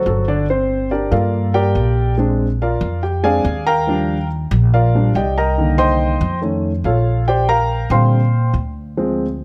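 A baby grand piano leads this short excerpt of Afro-Cuban jazz, taking a solo from 0.5 seconds that carries through to the close. Its tone is warm and intimate, with long sustain and the clatter of the action audible up front, lending the playing a natural, close-at-hand presence. An upright bass, plucked pizzicato on steel strings, supports it from the very start with a woody, thumpy sound that sits forward in the mix. The harmony moves through rich jazz colors such as Gm7, Ebmaj9, Cm9 and Faug7 before settling on Bb69, giving the danceable, straight 4/4 groove a sophisticated flavor. A light reverb surrounds the duo, keeping the sound airy and polished while preserving its close, personal feel.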